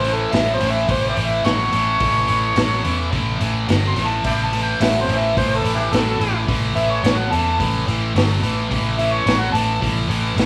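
Blues rock in the power-trio mould with a southern rock lean, this driving, raunchy excerpt moves at 107 BPM in A mixolydian, led by a gritty, overdriven harmonica solo with light vibrato, tongue slaps and scooped notes in a jazz style that runs until 9.8 seconds. Beneath it, a bright, double-tracked distorted guitar riff sits up front, a dark, round, foam-muted fingered bass holds down the low end, and a vintage acoustic kit with a punchy kick, medium-tuned snare, hi-hat and a rolled-off top pumps in its small room. The band plays live together in one room, with a moderate large studio reverb adding ambience.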